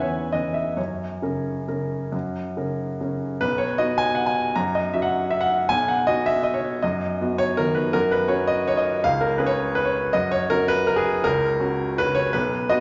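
A close, intimate grand piano sits up front in a reverberant recital hall, its soft, rounded top end and audible action noise giving the sound a natural, in-the-room character. This classical piano waltz in 3/4, cut from a longer piece, is graceful and sparkling, with the solo piano moving freely in rubato across a range from B1 to A#5. A brief opening phrase gives way at 3.4 s to a longer second passage that continues until 12.8 s.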